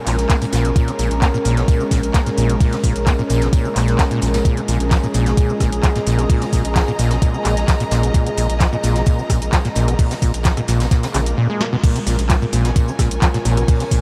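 A thumpy, up-front electronic kick drives this gritty, trippy acid house excerpt at 130 BPM in Bb minor, where a squelchy, resonant sawtooth acid bass riff with overdrive and delay rides over a deep, round analog bass, a booming dry drum machine with metallic hats and handclaps, a distant brushed jazz kit with tambourine, a smooth detuned analog pad holding a Bbm7 chord, and lush bowed strings fading in until a very quiet swell rising from 11.1 seconds, then a drum fill and a band accent at 11.6 seconds, launch the drop at 11.8 seconds, with the pad, strings, round bass and brush kit pumping inside a dreamy, reverb-soaked mix.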